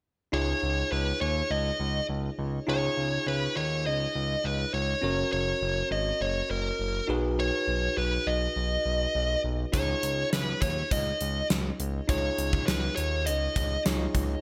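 A straight, steady 4/4 pulse carries this uplifting, nostalgic slice of 1980s-style pop, cut from a longer piece. A smooth synth bass glides up front from the start, its sawtooth-and-square tone sustained with a fast attack and portamento. A bell-like tine electric piano adds clean, direct chords beneath. Over them a fuzz lead guitar carries the melody, its picked, compressed distortion trailed by digital delay, until it stops at 13.8 s. The harmony moves from Dbadd9 through Gb and Cb6, returning to Dbadd9 at 9.7 s, where a gated 80s drum kit enters with a fat snare, a tight kick and hi-hat, sounding polished and airy in a big gated room. The mix has a bright digital sheen, set in a moderate plate reverb with a touch of small-room ambience.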